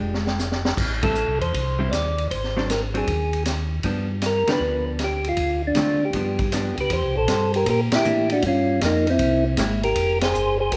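A percussive tonewheel organ carries the melody up front from 1.0 s, its round third-harmonic attack turning through a slow rotary speaker, in this soulful, bluesy soul jazz organ trio excerpt swinging at 157 BPM in G mixolydian before moving to C mixolydian at 6.9 s. A mellow tonewheel organ with key click and vibrato holds down the bass, a dark, compressed hollow-body jazz guitar comps until 9.8 s, and a vintage drum kit with a high-tuned snare, punchy kick and dark cymbals opens with a fill before band accents punctuate the tune. The trio sits in a moderate recital hall reverb, with chords moving from Am7 through Ab7#11 and G7 to a closing Fmadd9.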